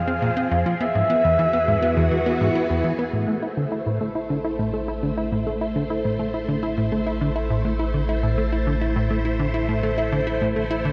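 A breathy, flute-like synth lead opens this cosmic, expansive stretch of sequencer-driven space music, floating over a swirling, phased string machine, a mellow, evolving analog drone and a punchy, funky plucky bass riff that sits up front with analog delay. The lead drops away at 2.5 s, and a bubbling, resonant stepped-filter texture fades in from the background at 4.7 s. A lush hall reverb and worn cassette tape with warbly pitch drift give the steady, straight pulse a vintage haze.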